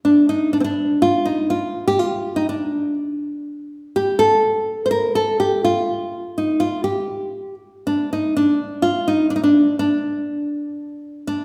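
Arabic-flavored solo piece for nylon-string guitar in D maqam kurd, moving at 123 BPM in a straight 4/4 with a longing, melancholic mood. The fingerpicked classical guitar sits up front, its warm acoustic tone staying between C4 and C5 across this roughly 11.4-second cut from a longer work. A wet recital-hall reverb with a 1.6-second decay gives the playing the resonant air of a church or concert hall.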